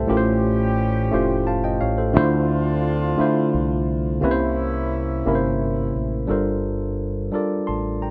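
Tender and warm, this short fragment of a slow R&B piece moves in a straight 6/8 at 58 BPM, counted in dotted quarters. A worn, slightly out-of-tune tine electric piano carries the accompaniment up front, its clean tone pushed through a combo amp, while a dark, round, punchy fingered electric bass sits deep underneath with a direct, amped sound. A mellow horn section adds punchy stabs with light vibrato and a tape echo, sounding distant and roomy in a pop-style ensemble, before dropping out at 5.9 seconds. The harmony moves through A7alt, Dm7 and C7b9, then shifts to Gm11 as a new section begins at 6.3 seconds, where piano and bass carry on alone. The mix is dry and rough, with the intimate, unpolished feel of a home demo.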